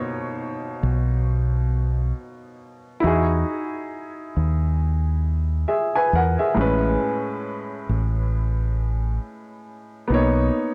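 Cosy and dreamy, this short lo-fi hip hop excerpt in B major drifts at 68 BPM with a gentle 16th-note swing, as a woody, vintage upright piano with cassette-tape colouring lays down warm maj9 chords from the start while a dark, round, up-front fingered electric bass enters at 0.8 seconds, all set in a small, lightly reverberant room.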